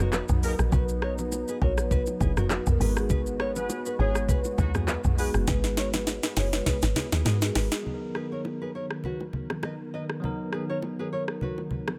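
Breezy and joyful, this afrobeats excerpt rides a lightly swung groove. An electronic afro-pop drum kit sits up front with a knocking kick, sharp snare and smooth hats under an overdriven edge, alongside handclaps, rim clicks, shaker and toms. Beside it, a woody, punchy log drum bass with a fast, decaying attack carries the low end until 7.7 seconds. Bright bongos and congas struck with hard hands, a bell-like tine electric piano, and a detuned sawtooth pad with chorus fill in the background. A fingerpicked nylon-string guitar adds a full-bodied riff through digital delay, while a round, mellow marimba with soft mallets takes the melody from 0.4 seconds. A distant, roomy horn section with vibrato and octave doubling plays a tight second line, and a drum fill starting at 5.5 seconds leads into the closing section, all set in a small room.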